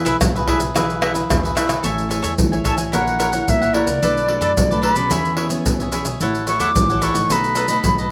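A silver concert flute carries the melody from 2.7 seconds, its airy, tongued tone colored by vibrato and set a little distant in the mix. This short, festive cut from a longer samba and choro piece moves in a straight four-beat feel with a sunny mood. A bright, crisp picked cavaquinho with slapback echo and a fingerpicked nylon-string guitar, deep and classical with fresh strings and audible finger squeak, share the accompaniment from the opening, moving from E through chords such as Amaj7, Bm7 and A6 before landing on B7. Beneath them, a woody pizzicato upright bass on steel strings anchors the low end. Maracas, pandeiro, tamborim and a deep surdo sit up front, played with soft hands and carrying a live-room feel. The recording is dry, made outdoors.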